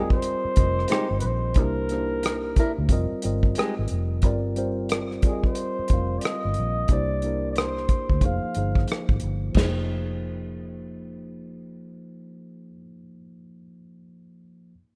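A 90 BPM groove in 4/4 swings its sixteenths, setting up a smooth, introspective stretch of R&B and neo-soul in F dorian, cut from a longer piece. A small-room soul drum kit sits up front with a tight kick, a medium-tuned snare, rim clicks, hi-hat, crash and dark cymbals, under a round, punchy fingered electric bass that is foam-muted and amped. A worn, slightly out-of-tune tine electric piano carries the chords through F7sus2, C9, Gm7 and Fm9 before settling on Fm7 as a new section arrives at 9.6 seconds. The bucket-muted trumpet leads with a veiled, breathy, whispered melody full of scooped notes and light vibrato, sounding distant and intimate in a jazz style, while a fingerpicked flamenco guitar adds a brief second line that stops at 3.7 seconds. The electric piano outlasts the other parts, ringing on until 14.7 seconds in this rough home demo mix with studio reverb.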